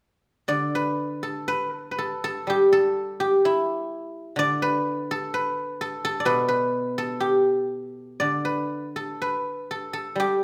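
Unhurried and rubato over a loose two-beat pulse, this elegant, serene fragment of Chinese traditional music features a solo guzheng, plucked with fingerpicks and placed up front, whose silvery, ringing tones sound from 0.5 to 10.4 seconds under a light reverb.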